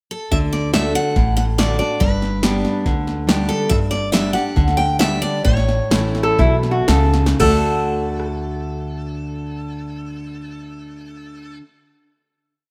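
A straight 4/4 train beat from an overdriven analog drum machine, with deep kick, punchy snare and metallic hats, drives this sunny, down-home honky-tonk and classic country piece in D major at 113-142 BPM, as a woody, thumpy upright bass plays two-beat root and fifth with walk-ups, an up-front dreadnought guitar alternates bass and strum with runs, a bright picked acoustic guitar carries the song melody with slapback echo, and a nasal, metallic lap resonator slide adds blues licks from 6.2 s before the band slows into a final chord at 7.4 s and the drums stop at 8.3 s, all in a rough, lightly reverberant home-demo sound.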